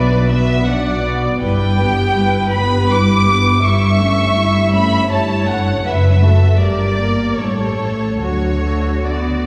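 A muted string orchestra opens all at once in this tender, slow romantic classical passage in D major and 3/4, moving with rubato at 70-83 BPM. The violins sing the melody up front with vibrato over a veiled second violin line, while dark, con sordino violas add soft-attacked accompaniment, and smooth-topped cellos join distant, lush double basses on the bass. A wet scoring-stage reverb sets the ensemble further back in the room as the harmony moves from Bm through Gm and A7 to settle on D at 8.2 seconds.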